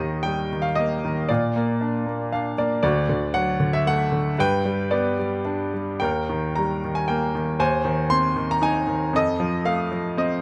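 Close, detailed microphones and a light reverb frame this cool, brooding excerpt of lyrical classical solo piano in a rubato 3/4 around 116 BPM, where a clear, intimate baby grand sits up front with its natural action noise audible, ranges from D2 to C6, adds a brief fill between 2.1 and 2.8 seconds, and moves through chords from Eb and Bb to D, G, Ab/Eb and F.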